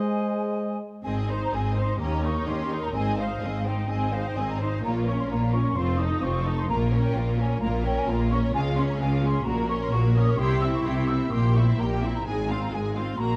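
A dark production in a moderate recital-hall reverb gives this quick classical-period orchestral passage, cut from a longer movement, an urgent and dramatic cast. It opens on a brief wind chord that falls away within the first second: a tight, roomy French horn section up front, a soft-attack clarinet, a close-miked cor anglais and a bassoon in the background. An airy flute section carries a second line above the texture throughout. The strings arrive by 1.1 s, with the cellos focused and close and the double basses smooth and even, together forming a weighty bass. A bright, distant viola section fills in the accompaniment, one violin section plays a second line in the background, and another, lush and expressive with vibrato, carries the melody as the harmony shifts into F minor toward the close.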